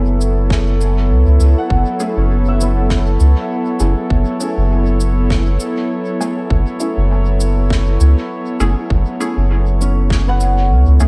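From the outset a warbling, lo-fi pad holds a dark F#m7 chord over a round, up-front sub bass, with a distant cabasa and fat snare carrying dub echo soon joining and an overdriven kick, re-recorded in a large room, arriving at 0.5 seconds in this meditative, deep ambient dub excerpt at 100 BPM in F# minor with a light 16th-note swing, where bright, thumb-plucked concert harp arpeggios ring out with echo from 1.6 seconds and a muted, detuned chord stab with phaser and lush chorus sits in the background from 2.0 seconds.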